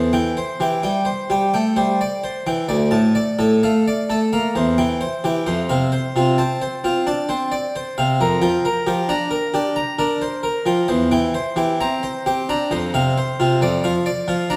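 Classical baroque-style suite movement in an unhurried, rubato triple metre, where a solo harpsichord sounds radiant and serene, its brilliant, plucked French-style tone with octave strings heard close and up front, set in a resonant recital hall across this brief passage taken from a longer piece.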